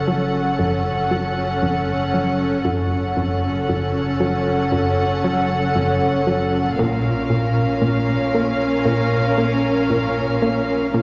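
Tense and eerie, this cinematic suspense cue moves at a slow 58 BPM in 4/4, drawn from a longer piece and shifting from F#m to A#m at 6.8 seconds. Up front, a dark, woody viola section bows lush sul tasto accompaniment with vibrato beneath a pure, floating violin melody, while close, intimate cello and double bass sections sit in the background, a deep, clean sine sub bass drones underneath, and a punchy, funky analog bass riff with a sawtooth filter pluck evolves and decays throughout. A very quiet taiko ensemble struck with hard sticks surfaces from 6.8 to 8.8 seconds, all set in a wet scoring-stage reverb.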